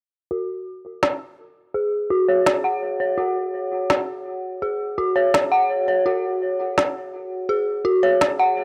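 A dark, detuned FM synth bell with an eerie, inharmonic tone and fast attack plays up-front arpeggios between F#4 and F#5, colored by chorus, phaser, vintage 12-bit sampler grit, tape echo and a low-pass filter sweep, while a woody, tape-warm electronic snare enters at 1.0 s in this heavy, tense half-time drum and bass cut at 167 BPM with a swung feel, set in light digital reverb on a dry hardware recording.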